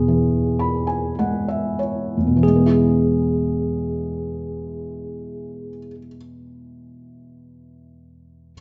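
Wistful and pastoral, this Celtic slow air drifts in 3/4 at a rubato 47 to 60 BPM in E major, tuned to A4 = 438 Hz, and it is cut from a longer piece. A felt-muted upright piano carries the accompaniment from E2 up to B5, sounding soft, mellow and intimate, with a dark, thick-felt tone, audible action noise and an up-front presence. Over an E chord, it plays a fill while the tempo slows through the opening phrase, which gives way to a second phrase at 2.4 seconds. A bell-like tine electric piano holds the melody on G#4, bright, clean and direct, sitting lower in the mix before it stops at 5.9 seconds. The upright piano continues alone until 8.5 seconds, bathed in a wet recital-hall reverb, with nothing sounding above 8 kHz.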